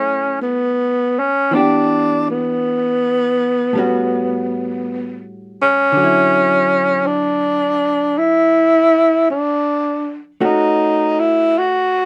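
This jazz ballad excerpt moves at an unhurried, swung pace in four, with an intimate, wistful mood. A breathy tenor saxophone carries the melody up front throughout, its mellow subtone, soft attack and whispered vibrato giving the line a smooth, hushed character. Beneath it, a vintage hollow-body electric guitar plays clean, picked, compressed accompaniment with a dark tone, sitting well behind the horn in the balance. The harmony drifts through rich extended chords, opening on F#m9, passing through Em7 and A13, settling on Dmaj9 at 6.0 seconds and closing on A6 at 10.4 seconds. A moderate club ambience surrounds the pair, lending the small-room closeness of a late-night set.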